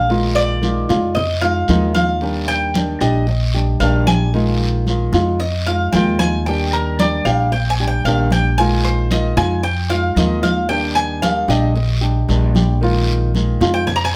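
A straight 4/4 groove at 113 BPM drives this relaxed, danceable stretch of Cuban son and guajira in Eb major, tuned to A4 = 444 Hz and cut from a longer piece. Hard-handed congas, bright and damped with a thin skin, sit in the background, joined by a raspy guiro, both carrying a small-room sound. Up front, a woody, thumpy pizzicato upright bass on gut strings anchors the low end, while a dark, fingerpicked flamenco guitar supplies the accompaniment. The Cuban tres takes the solo for the whole passage, from 0.0 to 14.2 seconds, its picked arpeggios ringing with a metallic edge from double strings, some of them octave-doubled. Underneath, the harmony rocks steadily between Bb7sus4 and Ebmaj7, and a moderate studio reverb gives the ensemble a touch of space.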